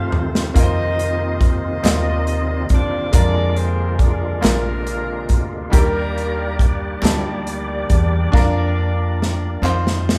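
Uplifting and reverent, this slow 6/8 gospel excerpt in Bb major at 46 BPM sets a smooth, octave-doubled horn section melody over bright, slightly detuned upright piano with audible action noise, a reedy tonewheel organ holding chords through a fast rotary speaker and chorus vibrato, a punchy, up-front country drum kit opening with a fill and closing with another from 8.3 seconds, growly pizzicato upright bass entering at 0.6 seconds, and very quiet crisp handclaps joining at 1.8 seconds, all played live in one room with moderate studio reverb as the chords move from F7 through Bb7 and Ebmaj7.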